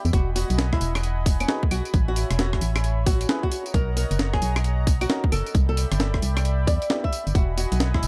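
A swung two-step garage groove at 133 BPM drives this sunny, bouncy UK garage excerpt in E major, where a tight, overdriven electronic kick and a gritty, pitched-up breakbeat kit of claves, hi-hat, rim click, snare and tambourine sit under a hollow, dark FM bass with sidechain pumping, while a fingerpicked flamenco guitar with audible finger squeak carries the melody through analog delay over a smooth, detuned sawtooth pad, a mellow organ stab with chorus and delay flickers in the background from 1.5 to 7.1 seconds, and the dry, echo-heavy mix moves through Emaj9, Amaj9, Bmaj9 and Cmaj9 before returning home.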